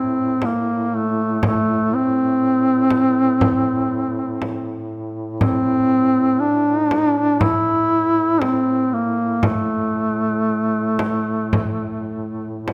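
Caucasian folk lament in A phrygian, solemn and mournful, moving in a slow, rubato 4/4 around 59 BPM in this excerpt. A warm, up-front duduk carries the melody between A3 and E4 with vibrato, scooped notes and a smooth top, while a dark duduk holds a low A2 drone beneath it with the same vibrato and scooped inflections. A close, dry frame drum struck with hard hands enters at 0.4 seconds, all set in a light reverb.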